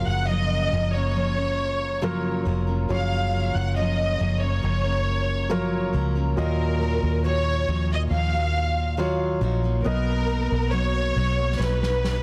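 Pop ballad in F# major at 69 BPM, heartfelt and hopeful, where an up-front bowed violin section carries the melody with expressive vibrato and digital delay over an intimate concert grand with audible action noise, a woody picked acoustic guitar playing delayed arpeggios, and a round, foam-muted vintage electric bass, moving from F#maj7 through D#madd9 to Bmaj7 in light small-room reverb until a snare drum fill enters at 11.6 seconds to close this portion of a longer piece.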